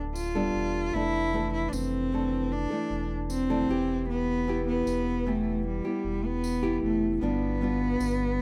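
A straight 4/4 pulse at 76 BPM carries this short acoustic pop excerpt, cut from a longer piece, with a sunny, heartfelt mood. A fingerpicked nylon-string guitar in classical style opens at 0.0 s, its fresh strings sounding bright and full-bodied as it moves through Gadd9, Dmadd9/F, Em and G7. A deep sub bass with an added octave sits underneath from the start, its sine-and-triangle tone sustained with a fast attack. From 0.2 s a single bowed cello takes the melody up front, clear and focused with vibrato. A jingly, compressed tambourine with a saturated edge joins at the same moment, all within the close, dry sound of a small-room 1970s-style studio.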